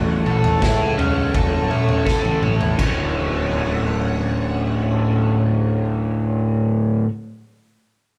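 A live band sound fills a large studio with moderate reverb, giving this short psychedelic rock excerpt a hypnotic, kaleidoscopic mood at 83 BPM in a straight 4/4, in D major. Up front, a dark, compressed, double-tracked overdriven electric guitar plays a picked riff through a rotary speaker, while a round, punchy fuzz bass sits low beneath it. Further back, a bright, vintage string machine holds slow-attack sawtooth chords, swirling with ensemble chorus and phaser. A gritty garage drum kit with a punchy kick, medium-tuned snare, toms and crash comes in at 0.3 seconds, sounding saturated and rolled-off in a pumping stone room, and plays a fill just before the harmony moves from A6 to Dmaj7 at 2.8 seconds. The drums stop at 3.0 seconds, leaving guitar, bass and strings to carry on.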